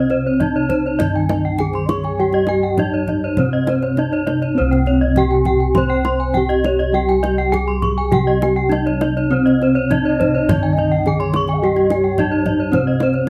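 Cut from a longer Balinese gamelan piece in straight 4/4, this brilliant passage opens with an up-front bronze metallophone melody struck with a wooden mallet over round, beating bossed gongs in the bass and a soft, padded-mallet metallophone accompaniment in a boxy small room, while two bright horn-mallet metallophones ring out high arpeggios, one of them airy, each metallophone tuned in pairs for shimmering beats, joined almost at once by deep, close, dry kendang played with hard hands, as a mellow, hollow bamboo bansuri with vibrato and rolled-off highs drifts in the background on a second line at 1.7 s and again at 10.1 s, set in light reverb.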